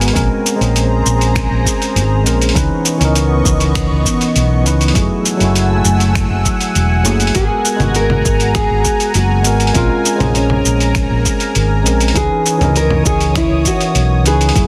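Sunset chillout at 100 BPM in a straight 4/4, this relaxed, smooth clip from a longer piece moves through minor ninth chords: A#m9, C#m9, F#m9 and G#m9, then back to A#m9 and C#m9. A clean tine electric piano, heard as if through built-in speakers, plays the accompaniment with digital delay. Alongside it, a lush, thick pad of detuned sawtooth and square waves with a sub octave holds sustained chords, blooming slowly and fading long under chorus and phaser. Up front sits a dark, round hollow-body electric bass, fingered and amped. A gritty, overdriven sampler-style soul kit of cabasa, congas, finger snaps and hi-hat, with soft clipping on the snare, is joined from 0.2 seconds by a deep, tape-warm electronic kick re-recorded in a small room. At 7.4 seconds a fingerpicked classical nylon-string guitar takes the melody with a shadowy tone, audible finger squeak and digital delay, all set in light digital ambience and a dense, heavily limited modern master.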